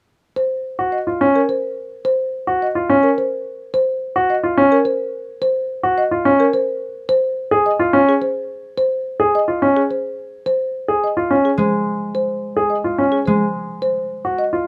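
A polished grand piano sits up front with arpeggios in this excerpt of hypnotic, urgent minimalist pattern music in Eb dorian, moving at 107 BPM in a straight 3/4 and opening on a rootless Ebm9 harmony. A softer folk marimba carries the melody from 0.4 seconds with a woody, rustic, round tone. A ringing concert harp adds brief accompaniment at 11.6 seconds, all captured with close, detailed microphones and a light reverb.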